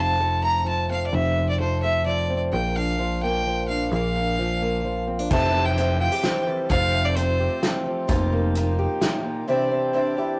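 Indie folk in 3/4 with a nostalgic, anthemic mood, this excerpt from a longer piece builds its arrangement as it goes. A clear, earthy fiddle carries the melody up front with light vibrato, over a fingerpicked archtop acoustic guitar whose warm tone carries audible finger squeak, and a growly, punchy picked electric bass. At 5.3 seconds the arrangement fills out: a bright, shimmering twelve-string acoustic guitar enters with octave-doubled, slightly boxy picking, alongside a natural country drum kit with a punchy kick, medium-tuned snare, hi-hat and crash in a small room. The harmony moves from F and Bb into Am7/F, Fadd9, Ebadd9/F and Cadd9, and the fiddle steps away at 7.6 seconds while the guitars continue. The whole take has a rough rehearsal-room character, with light reverb and warm saturation.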